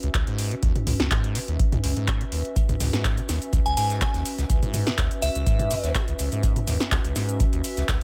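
Trippy and raw, this acid house excerpt rides a 124 BPM groove in 4/4 with a light swing on the sixteenths, sitting on a single D-flat minor seventh chord. A squelchy, resonant sawtooth acid bass carries the riff between Db2 and Db3, its filter sweep and fast, decaying notes roughened by overdrive, subtle chorus and cassette tape colour. An up-front analog drum machine supplies punchy snare, metallic hats, handclaps, shaker and toms, while a deep, tape-warm electronic kick drives underneath from 0.1 seconds. A warbling, nostalgic pad of detuned square, triangle and sawtooth tones hangs further back, mellow and lo-fi, with chorus, phaser, its own reverb and sidechain pumping. A very quiet acoustic funk kit adds a high-tuned snare and hi-hat from 2.6 seconds, and a glassy, crystalline FM bell line flickers between Fb5 and Ab5 from 3.7 to 5.9 seconds, bright with chorus and tape echo, all set in a light reverb.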